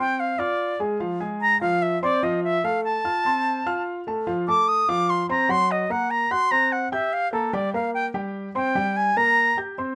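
Lively, danceable jazz in straight 4/4, this short cut from a longer piece features a bright, reedy silver concert flute taking the melody as a solo with vibrato and a soft attack, while an intimate grand piano with long sustain and audible action noise accompanies through changes from F to a Gb(#11) and on to Gm, both sitting up front in a moderate club reverb.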